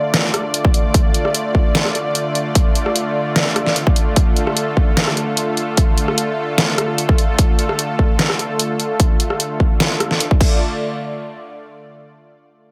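A punchy, overdriven electronic kick drum stands out at the front of this excerpt from a longer heavy wobble dubstep track, entering at 0.6 seconds and driving a half-time feel at 149 BPM in 4/4. Around it, a layered dubstep drum kit adds crash cymbal, hi-hat, rim click and a deep snare, also overdriven and re-recorded in a small room for a gritty, close presence. Alongside the drums, a lush unison pad holds a sustained D minor chord from the start, its detuned sawtooth tone thick, nasal and bright, with a soft attack, long release, chorus and sidechain pumping. The mood is chaotic and menacing, sitting in D minor with tuning at A4 = 442 Hz and a light reverb over the mix. After 10.6 seconds the harmony drops away into a brief closing passage with the chord gone.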